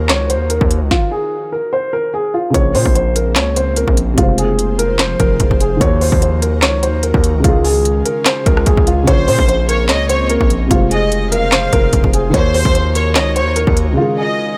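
Hip hop trap in Bb minor at 147 BPM with a half-time feel, this eerie, menacing fragment sets a dark, boxy concert grand melody up front over a felt-muted upright piano with audible action noise and an ethereal, detuned pad glowing in the background, all broken by a stop from 0.9 to 2.5 seconds before the full groove arrives. A trap kit with a hard-clipped kick, a sharp snare, crisp hats, handclaps and rim clicks drives alongside a heavy, saturated 808-style bass, both forward in the mix, moving through Bbmadd9, Fm, Ebm and Db. At 9.1 seconds a smooth-topped, earthy bowed violin section enters with a delayed second line, and the rhythm drops out into a brief silent gap at 14.0 seconds within a small room ambience.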